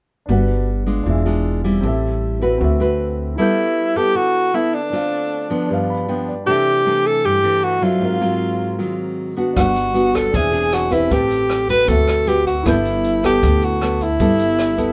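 A breathy alto saxophone carries the melody from 3.4 seconds, up front with vibrato, subtone and scooped notes in a jazz solo style, over a sunny, relaxed bossa nova in G major at 155 BPM. Fingerpicked nylon-string guitar, full-bodied with audible finger squeak, and a warm grand piano supply the jazzy chords, and the piano adds a fill at 5.7 seconds. A woody pizzicato upright bass plays through the opening, drops out, then returns at 9.6 seconds alongside an open jazz kit with a boomy kick, hi-hat and rim click and a grainy egg shaker in the background, all within light reverb.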